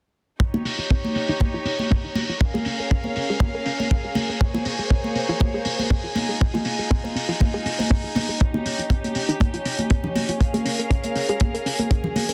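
A dry, tight acoustic kick drum sits up front in this sunny, feel-good nu-disco excerpt, its top rolled off, over a light 16th-note swing. Bright congas played with hard hands enter at 0.5 s, and a muffled acoustic hi-hat joins at 0.7 s, low-pass filtered along with its room sound. Alongside them, a chamber violin section holds sustained chords with light vibrato, soft attack and an intimate, bowed sul tasto tone, breathing with sidechain pumping. A soft, round pluck synth plays arpeggios with a dark sub-octave weight, chorus, tape echo and the same sidechain pumping, while a filter sweep runs across it. The harmony moves through Eb13, Db6, Bbm9 and Fm7 before circling back, set in a small room with light reverb and a dense, heavily limited modern master.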